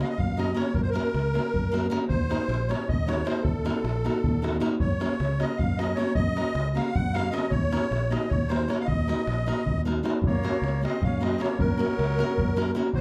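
A reedy, shimmering musette accordion leads this bittersweet, virtuosic Balkan wedding-band fragment in 7/8, its close, dry tone set against a bright, fingerpicked nylon-string guitar with audible finger squeak, a round fingered electric bass, and a tight davul heard distantly as if in a large room. The harmony alternates between Gb and Ebm, settling on Gb near the end, when at 10.3 seconds a warm, classical-style trumpet enters quietly from afar with a second line. The whole band sits a little back in a wet studio reverb.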